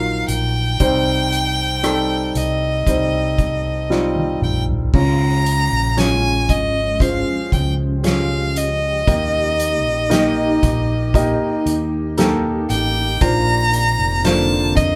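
A wet, small-room sound captures this hopeful, tender pop ballad at 58 BPM as a band playing live together, with a rich, smooth violin carrying the melody up front over a warm concert grand piano with deep bass and a round, dark fretless electric bass. A distant, roomy drum kit played with soft mallets enters at 0.3 seconds, its fat snare and punchy kick rolling into a fill just before the music moves to a new section at 4.9 seconds. At 5.8 seconds a shimmering, ethereal ambient pad fades in far in the background, its slow-attack sustained chords colored by chorus, phaser and reverb as the harmony moves through Db and Eb to a closing Bbadd9 in this fragment of a longer piece.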